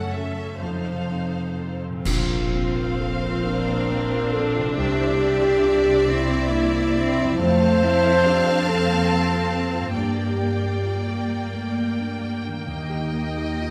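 This excerpt from a cinematic, emotional film score opens with a dark, intimate grand piano, its action noise audible beneath deep bass, joined by a lush violin section on a second line, violas with portamento sitting in the background, a very quiet thumb-plucked harp ringing out arpeggios, and a smooth, even cello section carrying the bass. The mood is moving and hopeful, unfolding slowly in 6/8 with uneven, rubato beats. At 2.0 seconds the music broadens with an accent: an expressive, close violin melody enters above, mellow French horns hold sustained chords with light vibrato, and a bowed double bass section deepens the low end. Bright cymbal crashes and concert bass drum, close and dry, mark this arrival before stopping at 3.8 seconds. The harmony moves through Bbsus2, Cadd9, F and Gm before landing on Eb, with the cellos dropping out at 11.9 seconds, all set in a lingering scoring-stage reverb.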